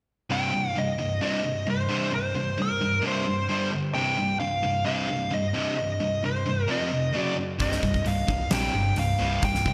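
A nasal lead guitar with a parked wah carries the melody up front from 0.3 seconds, its overdriven tone trailed by delay, over a heavy, driving hard rock riff in C minor at 132 BPM. Beneath it, a crunchy overdriven guitar with ensemble chorus plays the low riff alongside a bright, high-gain distorted guitar, moving through Cm with brief G5, F5 and F#5 changes. At 7.6 seconds a growly picked electric bass and a huge arena drum kit with a fat gated-reverb snare and punchy kick enter, all set in a lush hall with bright 1980s-style digital polish in this cut from a longer piece.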